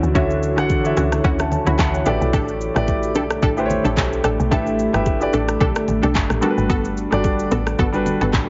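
Opening at once on a polished, up-front grand piano over a deep, moody sawtooth pad that pumps in the background, punchy detuned chord stabs with chorus and analog delay, a woody, percussive log drum bass and an electronic afro-pop kit of deep kick, handclaps, rim click and shaker, this warm, soulful amapiano excerpt at 110 BPM with a swung 16th-note feel moves from Dmaj9 to A7sus4 to Gmaj9, with very quiet, close and dry congas and bongos joining at 0.2 seconds and the piano adding a fill at 1.2 seconds, the whole mix set in a moderate spring reverb and squeezed into a heavily compressed, radio-like sound.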